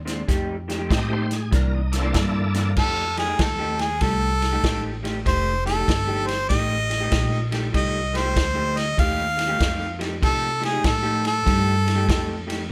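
Electric blues shuffle in F mixolydian at 97 BPM, laid-back and soulful, cut from a longer piece: a woody, thumpy pizzicato upright bass and a vintage kit with a punchy kick and medium-tuned snare carry the swung groove, while an electric guitar through a small old amp plays a slightly broken-up, lo-fi riff bathed in lush chorus. A shouting tonewheel organ with key click, overdrive and slow rotary speaker appears briefly between 0.9 and 2.8 seconds over F9 and C9 chords. At 2.8 seconds a close-miked, up-front harmonica takes the lead with scooped notes, light vibrato and a soft attack, its overdriven tone sitting in light reverb.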